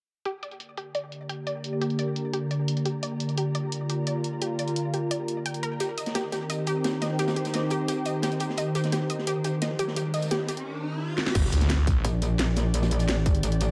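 A snarling, distorted saw bass growls in at the drop at 11.4 seconds beside an overdriven electronic kick, followed by a metallic FM wobble bass at 12.0 seconds, capping this tense, dark technical drum and bass excerpt at 173 BPM in G minor, where a sweeping resonant pad with sidechain pumping, a round analog pluck playing arpeggios through cassette tape and digital delay, an ethereal triangle-and-saw pad, a filter-swept drum and bass kit with a cracking snare, a gritty breakbeat kit entering at 5.8 seconds and a background riser and impact build the tension inside a lush hall reverb.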